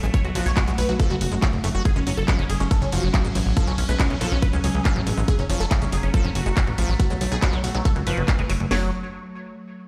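Hypnotic and psychedelic, this short cut from a longer psychedelic trance piece drives at 140 BPM in a straight 4/4, sitting in F# harmonic minor on an F#5 chord throughout a drop that runs from the start to 8.7 seconds. A garage drum kit anchors it up front with a tight kick, cracking snare and hi-hat, layered with a second, softer kit of handclaps and hi-hat, both carrying a tape-tinged, small room ambience. Beneath them a punchy, funky analog bass plucks low notes with a fast, decaying filtered attack and tube saturation, while a squelchy, resonant acid bass riff with filter sweeps adds chorus and tape echo above it. A detuned supersaw stab carries the melody with phaser, tape echo and sidechain pumping, and an evolving wavetable pad holds sustained chords in the background, morphing through phaser and built-in reverb. The mix stays fairly dry yet sounds as if played on a big sound system in a bare stone room, and a brief new section begins at 8.7 seconds.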